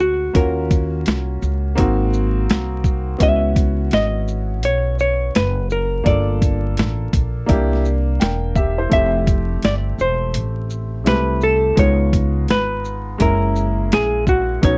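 A dry, close recording in a 1970s studio style, dusted with vinyl crackle and carrying little reverb, frames this mellow, cool jazz-hop cut from a longer hip hop piece. At 84 BPM in 4/4 with a 16th-note swing, a gritty, pitched-down sampler-style drum kit enters at 0.3 seconds, its thumpy kick and high-tuned snare sitting up front alongside hi-hat and shaker. A dark, clean hollow-body electric guitar carries the fingered melody between F#4 and E5, touched with slapback echo and placed up front. Underneath, a growly pizzicato upright bass with steel strings adds a woody low end, while a smooth, vintage upright piano supplies the accompaniment. The harmony moves through jazzy extended chords, from D#m7 and G#7 to C#m11, then Gm9, C9 and Fmaj9, before arriving at C#7 and F#9 at 11.8 and 13.2 seconds.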